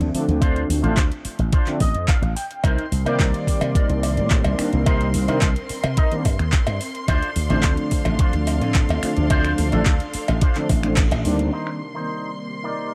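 A growly, punchy slap bass run through an envelope filter sits up front in this sensual, groovy nu-disco excerpt, moving at 108 BPM in a straight 4/4 feel in C dorian, with chords alternating between Dm7 and Cm7. Beneath it, an overdriven, thumpy electronic kick re-recorded in a large room drives the pulse, while a layered pop drum kit with metallic hats, finger snaps and handclaps adds grit from a small room. A mellow synth brass with a round, detuned sawtooth tone and gentle vibrato carries the accompaniment, pumping against the kick and trailed by tape echo, as a twangy, picked electric guitar with its own envelope filter plays a bright riff coated in analog chorus and echo. A clean electric guitar fill slips in at 1.5 seconds, and from 2.6 seconds a lush, woody studio string section holds sustained chords while a cowbell joins the percussion. The band hits an accent near the end, and from 11.5 seconds a filter sweep on an analog polysynth plays over the closing bars. 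The sound is dry and hardware-driven, with little reverb.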